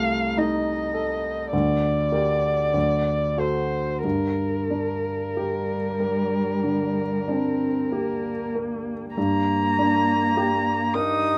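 A muted violin, played con sordino by a single player, carries the melody up front with a dark, veiled tone and vibrato, reaching from Bb4 up to Eb6. This is a slow, romantic movement for piano trio in G minor, moving at 45-53 BPM in 4/4 with a flexible, rubato feel and a solemn, yearning mood. A clear grand piano shares the foreground as accompaniment, its polished, present sound carrying long sustain and audible action noise that lend it an intimate quality. A muted cello enters at 0.4 s with a soft-attacked, bowed second line, its shadowed, hushed timbre sitting just beneath the other two. The harmony moves from Adim/C through Gm/D and D before settling on Gm at 4.0 s, and the opening material begins again at 9.2 s. Moderate studio reverb gives the trio a modest sense of room in this short excerpt cut from a longer piece.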